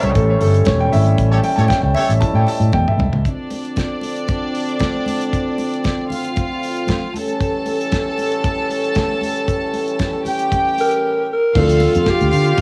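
A raspy, gritty alto saxophone takes the melody at 10.8 seconds in this driving, glamorous disco cut at 116 BPM in D minor, following a featured opening for intimate grand piano with audible action noise, punchy fingered electric bass, a brief burst of clear horn-section stabs with analog delay, a dry 70s drum kit with fat snare, tight kick and a fill, soft-handed background congas, a distant, roomy French horn section holding filtered chords that sweep through the middle, and a smooth, gut-toned violin section entering as a second line at 3.2 seconds, all in a light small-room cassette ambience.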